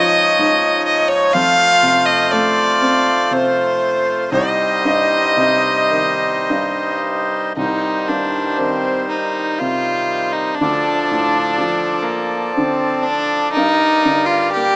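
A rough home-demo mix with a small-speaker sound and moderate plate reverb carries this haunting, longing Celtic slow air in C dorian, a rubato 3/4 excerpt at 52-64 BPM, where a rich, smooth fiddle with light vibrato sings the melody up front over close, reedy accordion chords in dry tuning and a soft, felt-muted upright piano giving mellow, short-sustained accompaniment.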